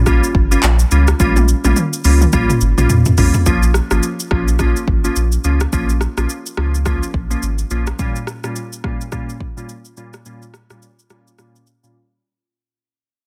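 Afrobeats at 106 BPM in Bb dorian with a swung sixteenth feel, this mellow, hypnotic fragment sets a round sine sub bass, up front until 7.9 s, beneath glassy, detuned digital keys with chorus and a filter sweep, while an overdriven deep house kit of deep kick, smooth hats, handclaps, rim clicks, shaker and toms plays a fill before the mix begins fading at 3.5 s, moving over Gm7b5, Bbm and Bbm6 chords in a dense, heavily limited master with digital ambience.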